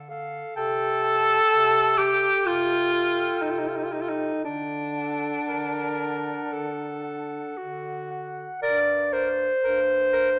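A warm tenor saxophone sits up front in this solemn, yearning classical fragment for single-reed quartet, its accompaniment shaped by vibrato and a soft attack yet still roomy and distant in character. A mellow clarinet sings the melody over a bass clarinet line, while a clear alto saxophone adds a second voice until it drops out at 8.6 s, just as the harmony turns from D to G minor, all played with rubato. The quartet is bathed in a moderate concert hall reverb and heard through an AM radio sound.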